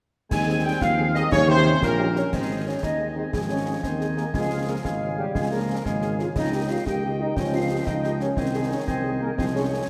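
A straight 6/8 pulse at 119 dotted-quarter beats per minute drives this rousing, proud military-style march for wind band in Ab major, an excerpt lifted from a longer piece. A trumpet section carries the melody with a warm but distant, roomy tone, while a present, lightly vibrato woodwind section, a small flute group with a pure, tongued sound, and a solo euphonium all trace second lines alongside it. A mellow, smooth-topped tuba sits up front on the bass, a very quiet trombone section holds sustained chords, and a French horn section joins in the background at 0.5 seconds with accompaniment. Concert snare drum, clash cymbals and concert bass drum keep the march step, the cymbals dark and the kit close and dry. The harmony moves from Ab/Eb and Eb7 through Ab, Db and Eb7/Db before settling on Ab/C, all bathed in a scoring-stage reverb that gives the band a grand, spacious finish.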